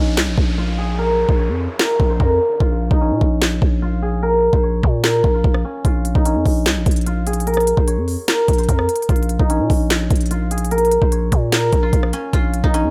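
A silvery, ringing guzheng carries the melody through a low-pass filter and delay, its filter sweeping across this brooding, hard-hitting trap excerpt in Bb minor at 148 BPM with a half-time feel, over a growling, buzzy 808-style bass on a Bbm chord, a trap drum kit with knocking kick, sharp snare, crisp hats, handclaps and rim clicks from 0.2 seconds, and an electronic downlifter sinking away in the opening seconds of a break that runs to 5.8 seconds, all set in light digital reverb.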